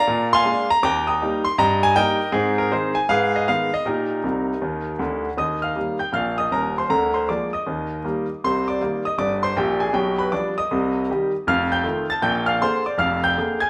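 A moderate stone-room reverb gives this live-in-the-room recording an intimate feel, with a bright grand piano sitting up front and the clatter of its action audible beneath the notes. It is a swinging, playful stride piano piece in 4/4, heard as a short cut from a longer performance, with the piano playing solo across its full 13.7 seconds. The instrument sounds brilliant and polished, spanning from deep bass notes to high treble, with a long sustain that rings into the room. The opening passage moves through chords such as Eb, Ab and Abm before the piano breaks into a fill from 4.2 to 5.4 seconds. The next section, from 5.4 seconds, turns toward Cm7, G7/B and F7, closing on Bb7 harmonies as the passage is cut off.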